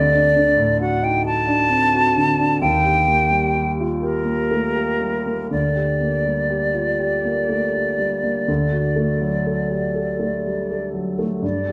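In a 12/8 with a slow, rubato pulse, this elegiac romantic duo for flute and grand piano drifts through a brief, melancholic passage cut from a longer piece, with the harmony moving from D through Eb and Gm/D before settling back on D. The silver concert flute carries the melody with an airy, metallic tone, vibrato and soft attacks, sitting up front over the warm concert grand's accompaniment, which reaches down into a deep bass. A recital hall reverb with a 1.5-second decay wraps the pair in a dark, wet, warm sound.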